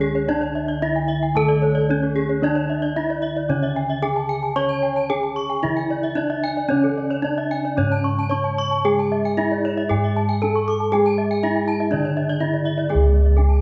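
A straight 4/4 pulse moves between 112 and 125 BPM in this hypnotic, brilliant Balinese gamelan passage in C# pelog, cut from a longer piece. Up front, a bronze metallophone struck with a horn mallet carries the melody from C#4 to C#5, its paired tuning producing shimmering beats over a bright, ringing tone. Beneath it, a second metallophone, close-miked, dry and full, plays the accompaniment in the lower register, while bossed gongs with padded beaters supply a round, mellow, beating bass with a boxy small-room colour. Two further metallophones spin arpeggios above: one hit with a wooden mallet sits mid-forward, and the other, an airy horn-mallet voice, joins at 0.2 s and reaches up to C#6, both shimmering through their paired tuning. The ensemble plays live in one room, wrapped in a wet large studio reverb with a 1.5 s decay, and the sound tops out at 7.9 kHz.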